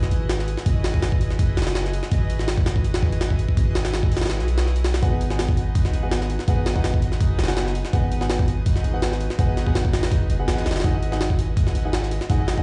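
Nostalgic yet frenetic, this drum and bass and jungle excerpt runs at 165 BPM in G# minor, with a gritty, pitched-up sampler drum kit's thumpy kick and high-tuned snare driving up front over a deep, sine-like 808-style bass with tube saturation, while a floating chamber string section holds soft-bowed sul tasto chords through Emaj9 and G#m7 and a vintage grand piano enters at 5.0 seconds with filtered stabs trailing dub echo, all heard through a bare room's large reverb and vinyl crackle.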